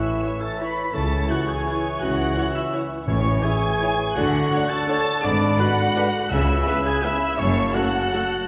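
A festive, sweeping orchestral passage in A major opens at once with nearly the full ensemble, moving in 3/4 at 168 BPM with uneven, rubato-stretched beats. A rich, focused violin section carries the melody high above, while a second, lush violin line, a bright, airy flute group, a warm clarinet and a distant oboe weave supporting lines beneath it. A close-miked bassoon and a very quiet viola section, bowed with portamento, fill out the accompaniment, as a mellow French horn section holds very quiet sustained chords and a dark, tight trumpet section adds stabs from the background. Clear cello and smooth double bass sections anchor the low end until about 7.7 seconds, and a round timpani note with soft mallets sounds at 3.1 seconds. The harmony moves from A through Dmaj7, G#dim and C#m7 to settle on F#m, all bathed in a wet concert-hall reverb that places the orchestra toward the back of the room, with a softened top end.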